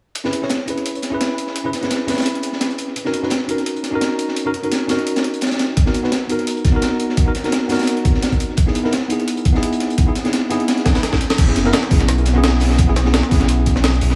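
An echo-heavy mix with light studio reverb frames this dreamy, uplifting liquid drum and bass, cut from a longer piece and moving at 171 BPM in B major with a gentle swing on the sixteenths. A worn, mellow tine electric piano sits up front through tape echo, slightly out of tune, carrying the chords from C#m7 to Bmaj7 and then Emaj7 over B. Two breakbeat kits run beneath it. One is a pitched-up, sampler-style kit with a high-tuned snare, hi-hat and crash. The other is a dark, saturated acoustic kit with a rolled-off top and high-pass filtering on its hats, snare and room, and both kits pass through tape echo. A thumpy, gritty electronic kick comes in up front at 5.8 seconds, and after a drum fill the drop lands at 11.4 seconds, where a deep, full sine sub bass with an octave enters under an F#7sus4 chord.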